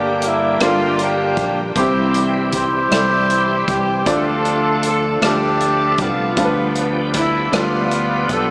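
A vibrato-laden saxophone section carries the melody up front, distant and roomy in jazz style, with a touch of analog delay on this jubilant, uplifting slow gospel passage in 6/8, cut from a longer piece. Behind it, a clear, worn grand piano accompanies and a full, shouting tonewheel organ with key click, chorus vibrato and slow rotary speaker sustains chords over Gm, C, Dm and G7/D, while a fingered electric bass sits direct underneath. A distant big-band drum kit with a punchy kick, hi-hat and rim click enters at 0.2 s, and a huge ambient reverb soaks the mix into a dreamy haze with a small-speaker sound.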